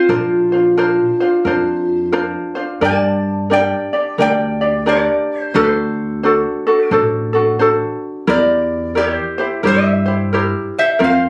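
Sunny and relaxed, this swung Hawaiian excerpt is led by a bright, nasal lap resonator guitar played with slide and fingerpicks, sitting up front alongside an equally forward, light, fingerpicked ukulele, with a woody, thumpy pizzicato upright bass underneath. A ringing vibraphone struck with hard mallets, carrying a medium motor vibrato, adds a brief second line that stops at 2.1 seconds, while the chords move from Bbadd9 through Gm and D7 to C7/E. Captured on a phone in the room, the sound carries a light club reverb.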